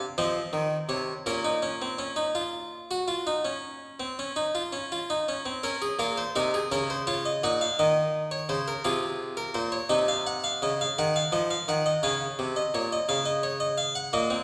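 A lone Italian-style harpsichord, plucked, nasal, thin and bright, sits up front in a reverberant recital hall as it spins a driving yet contemplative baroque-style three-part fugue in a straight 12/8, a fragment cut from a longer piece that moves into a new section at 5.6 seconds.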